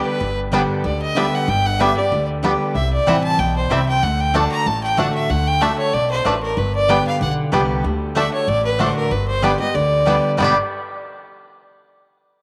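Joyful and lively, this swung bluegrass excerpt sets a biting, bowed fiddle melody up front beside a full-bodied picked acoustic guitar, with growly pizzicato upright bass entering at 0.2 s and twangy fingerpicked banjo arpeggios joining at 0.5 s alongside round mandolin stabs in the background, the band heard through a wet spring reverb.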